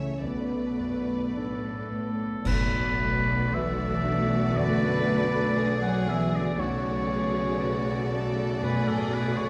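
A slow, rubato orchestral film cue in B dorian at 52-60 BPM opens on a Bm7 chord, with close, vibrato-rich violin sections carrying the melody and a second line, a focused viola section, lush symphonic cellos and bowed double basses beneath, a dark, mellow baby grand piano with audible action noise in the background, and a brief French horn section holding sustained chords. At 1.4 seconds a distant, roomy solo oboe comes up front with its own line, and a band accent at 2.4 seconds is followed by dark clash cymbals and concert bass drum entering at 2.5 seconds. The longing, sorrowful mood is deepened by a wet recital hall reverb that places the ensemble further back in the room, in this section cut from a longer piece.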